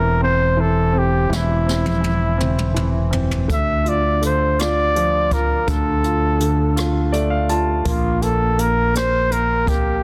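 A clear flugelhorn carries the melody from the start with vibrato and scooped notes, its line touched by delay, over a bright concert grand piano and a growly, up-front fretless electric bass in this romantic, swaying six-eight pop ballad excerpt. A jazz brush drum kit with a high-tuned snare and boomy kick enters at 1.3 seconds with a fill, and the polished piano adds a brief fill of its own at 6.8 seconds as the chords move from C/E through Dm to Bb5. Light reverb and a small room ambience sit around a dense, heavily limited modern master.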